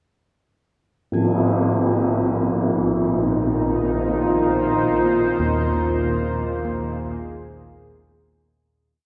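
A deep, moody pad sits up front in this short, unsettling dark ambient drone piece, holding slowly shifting sawtooth chords with a sub octave, chorus and a long release as the harmony moves from Bbsus2 to Bb9sus4 at 4.9 seconds. Beneath it, a swarming, detuned drone with a wave-folded, granular edge fades in and evolves in free time, adding tension from the low register. The piece opens at 1.1 seconds with a brief, distant tam-tam hit, its dark cymbal tone filtered, alongside a bronze singing bowl struck with a wooden striker that rings with slow beating on a held high note in the background before fading out. From 5.4 seconds, gamelan-type bossed gongs play round, metallic arpeggios in two slow loops of unequal length drifting against each other, carried by a diffuse ambient delay. The whole mix is dreamy and soaked in a lush hall reverb, leaving a dark, meditative haze.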